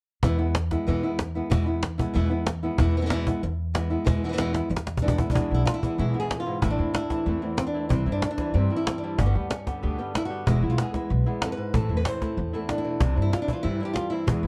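Intense and fiery, this flamenco excerpt drives forward at 188 BPM in a straight 4/4, cut from a longer piece. A bright, up-front fingerpicked flamenco guitar carries the melody from start to finish, joined throughout by a growly, thumpy pizzicato upright bass on steel strings and a woody cajon with faint snares, close and dry at the front of the mix. After a drum fill from 4.5 to 5.3 seconds, a second fingerpicked flamenco guitar enters with warm stabs colored by slapback echo, sitting lower in the mix. The opening rests on E before the harmony cycles through Am, C, G and back to E, then Am and C again. Light reverb and a dark, warm production give the sound a shadowed, smoky depth.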